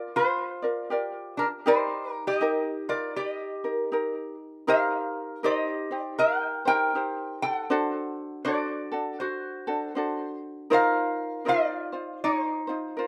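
Dry and open-air, this short Hawaiian fragment cut from a longer piece sets a lap resonator guitar and a ukulele up front, each carrying a quick slapback echo. The resonator guitar sings the melody with a metallic, nasal slide tone shaped by fingerpicks, while the light, fingerpicked ukulele supplies mellow accompaniment through a swung 4/4 lilt. Moving from Gm7 through Ebmaj7 and D7 to a closing F7sus4, the mood feels sunny and dreamy.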